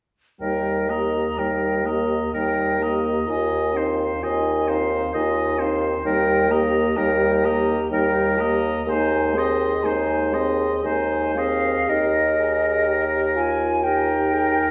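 A slow, lyrical wind quintet movement in Eb major opens at 0.4 s with all five instruments sounding together in a gently rubato 3/4, moving at roughly 56-67 BPM. The silver concert flute carries the melody high above, airy with a soft attack and vibrato, while the clear oboe sings a second line just beneath it, sounding slightly distant and roomy. The smooth-topped clarinet and the French horn, with its light vibrato, fill in the inner accompaniment. The mellow bassoon sits up front, holding a low Eb pedal under harmony that drifts from Eb through Fm7 and Ab back home over that sustained bass. A brief contrasting passage begins at 11.9 s before the fragment breaks off, all of it wrapped in a wet recital-hall reverberation that gives the ensemble a tender, glowing character.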